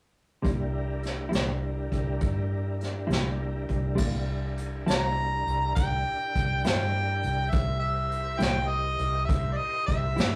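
A rough rehearsal-room recording with tube saturation and light reverb captures a rollicking, gritty slow blues in 12/8, with a round, foam-muted fingered electric bass and a brushed vintage drum kit with a punchy kick and dark cymbals up front, a clean, compressed electric guitar with tremolo playing accompaniment in the background, a smooth tonewheel organ holding sustained chords through a slow rotary speaker and chorus vibrato, and, from 4.9 s, a clear, overdriven harmonica taking the jazz-style solo melody with vibrato and scooped notes in this passage cut from a longer piece.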